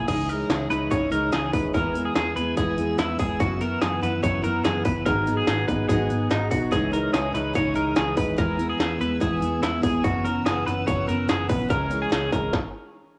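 Restless and bittersweet, this jangly indie pop clip at 144 BPM in C# dorian pairs a full-bodied picked steel-string acoustic guitar and bright, twangy twelve-string electric arpeggios through analog delay with a round, foam-muted vintage bass, a mellow organ-string pad carrying phaser and ensemble chorus in the background, and an up-front industrial drum kit with a distorted kick and clanging snare, all cycling from C#madd9 through E, F#7sus4 and G#m7 to a C#m close before a stop at 12.5 seconds, with a cassette-tape grain and light digital ambience.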